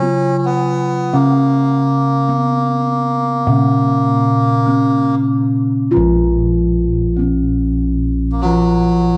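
A bronze metallophone struck with padded disc mallets carries the melody in this hypnotic, stately gamelan passage, its ringing, mellow tone sitting softly at the top of the texture. Just beneath it, a melodica holds a second line that is reedy, breathy and nasal, placed up front in the mix. A second metallophone, played with a wooden mallet and close-miked, supplies a dry, full accompaniment in a lower register. Bossed gongs struck with padded beaters give a round, beating bronze bass. The four parts sound together across the 9.2 seconds in a straight four-beat pulse, with a new section arriving at 5.9 seconds. The ensemble sits in a wet echo chamber reverb, and the passage is cut from a longer piece.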